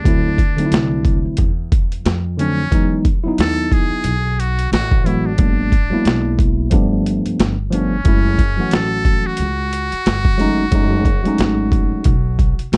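A muted trumpet carries the melody in a cool, jazz-style solo, its metal mute giving a buzzy, breathy and thin tone with a brilliant edge, sitting low in the mix from 0.0 seconds. This is a nocturnal jazz-hop excerpt from a longer piece, moving at 90 BPM in 4/4 with a 16th-note swing. A worn, slightly out-of-tune tine electric piano sits up front with light overdrive, heard through its built-in speakers, and accompanies the trumpet through harmonies such as D9, Emaj7, G#m7b5, G9 and F#m7 until 12.1 seconds. Underneath, a woody, dark upright bass is played pizzicato on steel strings. The boom bap sampler-style drum kit is the loudest part, gritty and compressed, with a thumpy kick, a high-tuned snare and hi-hat, tape-colored and pushed to the front, running to the end at 12.8 seconds. Light reverb and a dark, warm production round out the sound.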